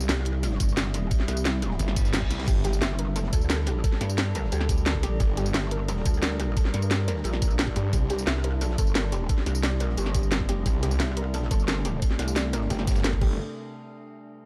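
Dark technical drum and bass at 176 BPM, this futuristic excerpt drops straight in, with an eerie, metallic FM drone holding sustained chords under a chorused haze and its own reverb, pumping against the kick. Two basses carry the low end: a snarling, detuned saw bass that growls through distortion and overdrive in short bursts, returning fully from 10.7 seconds, and a heavy, pulsing pluck wobble bass with chorus and tube saturation that runs nearly the whole way, both sitting up front. The drums stack a knocking electronic kick, an up-front kit with a cracking snare, bright hats, crash and tambourine, and a very quiet, gritty breakbeat layer with dark cymbals and a high-tuned snare. A reverse cymbal sweeps in the background at 2.0 seconds, leading into a soft, round pluck arpeggio from 2.5 seconds, dressed in lush chorus, 12-bit sampler grit and dub echo. The harmony moves from C to Gmadd9 and a C5 power chord before a Gsus2 near the close, all wrapped in a dark production with light digital ambience.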